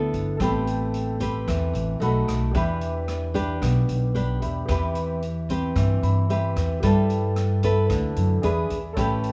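Intimate and wistful, this short bossa nova excerpt in E minor moves at 112 BPM with a straight feel, its fingerpicked nylon-string guitar sitting up front with a full-bodied, classical tone and audible finger squeak, over a woody pizzicato upright bass. A clear, polished grand piano adds accompaniment in its upper range and plays a fill from 5.8 to 6.8 seconds, while a swinging big-band drum kit with a punchy kick, hi-hat and rim click enters at 0.1 seconds. Chords such as Am9, B7, Em7, Cmaj7/E, G69 and E7 pass through a small room with light reverb.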